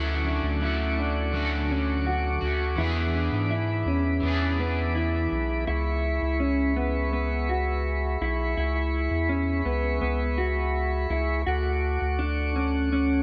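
Dream pop at 83 BPM in a straight 4/4, this short excerpt has a floating, dreamy mood, moving through Dmaj7, E7 and C#m7 before settling back on Dmaj7 at 11.5 seconds. A mellow tonewheel organ holds soft, flute-like sustained chords high above, its key click audible and its tone turning through a slow rotary speaker. Beneath it, a dark, clean electric guitar plays fingered arpeggios, compressed and colored by analog chorus and tape echo. A round analog bass sits up front with a deep, slightly nasal sine-like tone, fast in attack and sustained. For the first 6.2 seconds, a twangy, picked electric guitar at the edge of break-up adds accompaniment through harmonic tremolo and lush chorus, then drops out. A moderate, lush hall reverb wraps the parts in a long, hazy space.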